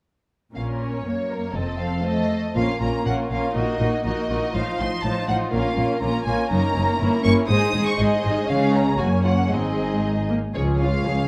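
A quick, stormy classical-period movement for string orchestra in 2/4 at 121 BPM, cut from a longer piece, where a distant, lush violin section carries the melody over a woody second violin line, dark expressive violas, portamento-inflected cellos and a rich double bass section, all bowed with vibrato in a moderate recital-hall reverb as the harmony turns from Bb minor toward Db major at 6.5 seconds.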